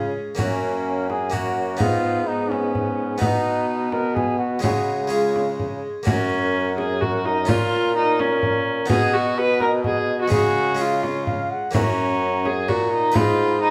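Courtly and festive, this renaissance-style consort dance moves in a steady triple metre with a straight feel, taken from within a longer piece. A mellow cornet carries the melody with light vibrato, sitting back at a distance in the room. A single bowed viola plays the second line with a rich, reedy gut-string tone, placed up front. A bright, thin harpsichord supplies plucked accompaniment in a French manner, and a bassoon anchors the bass with light vibrato. A frame drum joins at 0.4 s and keeps time until 13.4 s, while the music states the same phrase twice, the repeat beginning at 6.1 s over chords that circle from F# through G#m, B and C# and back home. Moderate large-studio reverb gives the ensemble an airy, spacious sound.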